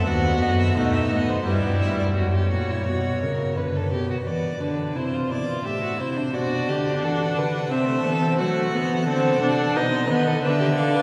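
The warm cello stands out most, bowed up front with vibrato, a soft attack and expressive portamento as it carries the bass line beneath the quartet. This baroque-style classical fugue for string quartet moves at 87 BPM in 3/4 with a straight feel, lively yet stately in mood, and is cut from a longer piece. Above the cello, a rich, smooth violin carries the melody with even vibrato, while a dark violin with a soft attack and gliding portamento weaves an expressive second line. A rich viola, heard from a distance, supplies accompaniment, dropping out at 2.2 seconds and returning at 6.3 seconds. The harmony moves through chords such as B/D#, F#, Am, F#dim and B, all bathed in a wet cathedral reverb that places the ensemble further back in a resonant space.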